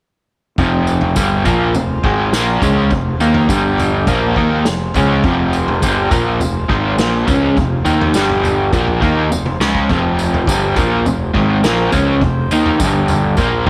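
In a straight 4/4 at 103 BPM in F minor, this dark, trippy psychedelic rock excerpt sets a punchy vintage drum kit, with a drum fill at 9.6 seconds, under a crunchy, double-tracked overdriven guitar riff with harmonic tremolo up front, a fuzzy fingered electric bass, a jingly tambourine and a very quiet, reedy, breathing hand-pumped harmonium holding sustained chords, all in a pumping small-room ambience with echo chamber reverb as the chords shift between Fm and G5.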